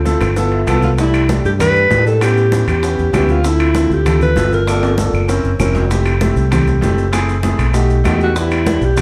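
Afro-Cuban jazz with a sophisticated, lively feel, where a mellow alto saxophone sings a vibrato-laden, subtone melody with scooped notes from 0.8 to 5.1 seconds and returns at 8.2, over an up-front concert grand piano with deep bass and long sustain, a direct, amped fingered electric bass, and a percussion bed of round bongos, ringing congas, grainy maracas, metal-shelled timbales and woody claves in the background, all set in a wet large-studio reverb heard from further back in the room, in a short cut from a longer piece.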